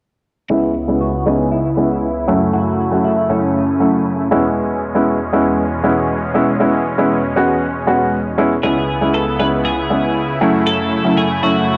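Confident and bittersweet, this pop piece moves at 118 BPM in a straight 4/4 in C# minor, cycling through C#m7, F#m7 and E6 chords under a filter sweep that runs throughout. A mellow, intimate baby grand piano, with audible action noise and short sustain, carries the accompaniment up front beside a smooth, detuned supersaw holding soft-attack sustained chords. A bright, twangy twelve-string electric guitar with analog chorus plays the clean, picked melody, pausing at 4.3 seconds and returning at 8.6 seconds, all within a dry, gritty recording with light reverb.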